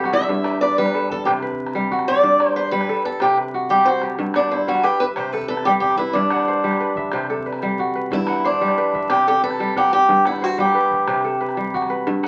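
Joyful and flowing, this West African string and xylophone excerpt moves at 122 BPM in a straight 12/8 in G major, with bright, ringing fingerpicked kora arpeggios and a boxy, swing-style picked acoustic guitar melody, complete with finger squeak, up front, a deep, distant calabash in the background, a guitar solo through 4.2 seconds and a drum fill from 3.4 seconds, all steeped in small-room reverb and the crackle of a very old 78 rpm record.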